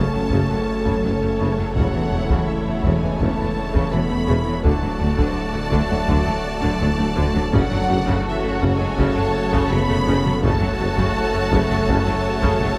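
Hybrid orchestral and electronic film score in F# minor at 83 BPM, relentless and vast, where a rich, focused violin section carries the melody over a lush second violin line, clear violas, a silky analog string pad and mellow horns with very quiet trombones sustaining chords through F#m, A/E and D, while bright cellos, distant double basses, a roomy tuba and a thick detuned saw bass with chorus hold the low end, very quiet taiko drums with hard sticks enter at 0.3 seconds, and a moderate scoring stage reverb surrounds this excerpt from a longer piece.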